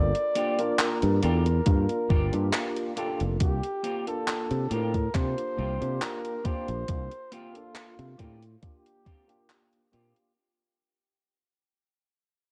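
A slow 69 BPM 4/4 groove with a light 16th-note swing carries this melancholic, hazy vaporwave fragment, where a thumpy, tape-warm electronic kick enters at 1.7 s beneath gated, sampler-gritty drum-machine handclaps and hi-hat, a bright, up-front fingered electric bass anchors the Gm7 to C7sus4 change, a clean tine electric piano with ensemble chorus and 12-bit grit plays through built-in speakers, a dark semi-hollow guitar riff shimmers in lush chorus, and a mellow, breathy flugelhorn solo with jazz-style vibrato floats on tape echo, all within a cassette-toned digital ambience that fades out from 1.1 s.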